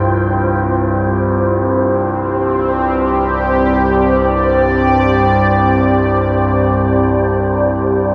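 Ominous and desolate, this short dark ambient drone piece, cut from a longer work, drifts in free time for about 8.1 seconds. An overtone-sweeping drone holds the low end between C2 and G2, its sawtooth and sine tones carrying moving, resonant overtones with a slow attack, long release, chorus and its own reverb, placed up front. Above it, a sweeping resonant pad sustains chords from C4 to G5, bright and detuned, with a sub octave, a filter swell and chorus giving it an evolving quality that sits just as close to the listener. Further back, a dark, breathy, wind-like tuned noise texture hovers on C5, airy and softened by its built-in reverb. All three parts sound together for the full length, bathed in a huge, wet ambient reverb with an 8.6-second decay that stretches the sound into a cavernous haze.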